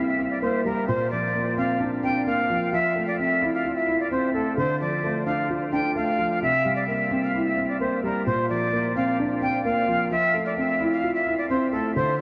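Brooding and hard-hitting, this half-time hip hop passage at 130 BPM, cut from a longer piece, sets an airy jazz flute melody with vibrato, a crisp chiffy attack and a delay over a dark, boxy concert grand piano whose deep bass is colored by analog chorus, both parts filtered and both heard from 0.0 to 12.2 seconds. The harmony moves through C7, Bbadd9, Fmaj7 and Dm before circling back. The whole dreamy mix is soaked in a huge ambient reverb with a 9.0-second tail.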